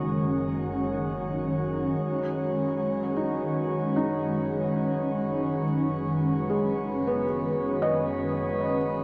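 A shimmering, octave-up pad opens this weightless ambient excerpt, its dark, slow-attack chords sitting up front with chorus, phaser and its own reverb, while a reedy, breathing pedal harmonium holds a drone and a glassy, airy glass harmonica hovers in the background. Beneath them, a rich chamber double bass section sustains a low F#1 with smooth, bowed vibrato, fading in from 2.0 s onward. The harmony moves from F#69 to Badd9/F# at that point, at a calm 77 BPM in a straight 4/4, tuned to A4 = 435 Hz. At 3.2 s a soft, felt-muted upright piano enters with intimate, mellow arpeggios trailed by a diffuse ambient delay. A wet shimmer reverb with an 8.0-second tail washes over the mix, giving the whole passage an ethereal, floating glow.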